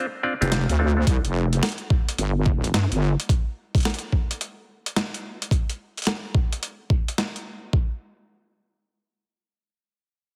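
Hollow, nasal clav stabs open this funky, gritty glitch hop at 108 BPM with a swung 16th-note feel, pumping and echoing through a filter sweep over Dm7 in the opening second. A heavy, saturated wobble bass with chorus and an overdriven boom bap sampler-style kit of hi-hat and medium-tuned snare enter at 0.4 seconds, followed by a thumpy electronic kick from 1.1 seconds, all set in a heavily compressed, radio-like digital ambience.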